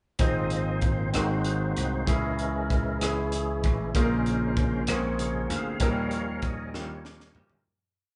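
A slow six-eight groove anchors this brief, jubilant and hopeful gospel piece, played by a band live in one room with a moderate large-studio reverb and a softened top end. The crisp fusion drum kit sits up front with a high-tuned snare, a punchy kick, rim clicks and toms, its saturated, gritty sound pumping in a small room. A bright, amped slap bass plays a slow gospel line with chromatic approach notes. A clear concert grand with deep lows and long sustain plays quarter-note chords in drop-2 voicings, adding grace notes. The tonewheel organ takes the solo role throughout, holding full, lightly overdriven drop-2 chords through a slow rotary speaker and chorus vibrato, moving from Ab6 through Dbm and Bbm7 to Eb7 before the piece fades from 5.8 seconds and a drum fill enters at 6.7 seconds.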